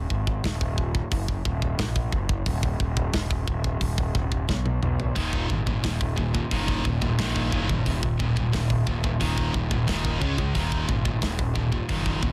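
A dense, heavily limited modern mix with little reverb puts the low end and drums close and dry in this relentless, epic heavy metal excerpt cut from a longer piece. A fuzzy, punchy picked electric bass opens the track with overdrive, joined almost at once by a tight acoustic metal drum kit set up front, its medium-tuned snare, firm kick, hi-hat and toms sitting mid-forward in a studio room. A drum fill from 4.5 to 5.2 seconds leads into the arrival of two picked electric guitars at 5.2 seconds, playing the riff together in a straight 4/4 pulse. One is bright, scooped and high-gain with heavy distortion, placed up front, while the other is dark and sludgy with overdrive, thickening the riff. The harmony moves from a minor chord through a brief unharmonized break into power chords, stepping down before returning to the minor chord near the close.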